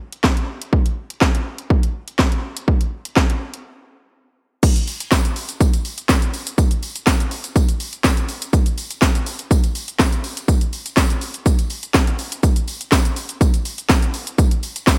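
A house drum kit opens this short pop cut, striding in a straight 4/4 at 123 BPM with a summery, upbeat lift. The kit is electronic and layered, with a punchy kick, a cracking snare, handclaps, hi-hat, shaker and crash cymbal, all pushed up front and given a gritty overdrive along with the air of a large room. A brief break arrives at 3.7 seconds, and at 4.6 seconds the groove moves into a new section as a tambourine joins. The tambourine is jingly, warm and acoustic, sitting close and dry in the background beneath the kit. The overall sound carries little reverb, with an upbeat energy that continues until the cut ends at 15.0 seconds.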